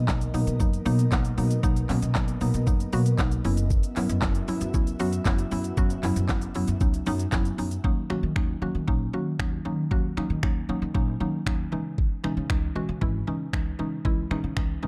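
Dance-pop at 116 BPM in 4/4 with a straight, energetic and driving feel, heard as a short cut from a longer piece with a dark production, light reverb and digital ambience. A glassy, ethereal FM pad with ensemble chorus and its own reverb sits in the background with slow-attack sustained chords, pumping against the kick, and it drops away at 7.8 seconds. Underneath, a pizzicato upright bass with a woody, steel-string tone plays throughout, also pumping, while an up-front mallet-like FM pluck adds round, percussive accompaniment with a fast attack, a noise layer and a mellow chorus sheen. The layered electronic pop kit stays up front with a knocking kick, fat snare, crisp hats, shaker, handclaps and finger snaps, all carrying a tape-warm character. The harmony moves from Bmaj7 to F#7sus4, then into D#m7 as the second section begins at 7.8 seconds, and on to C#madd9 at 11.7 seconds.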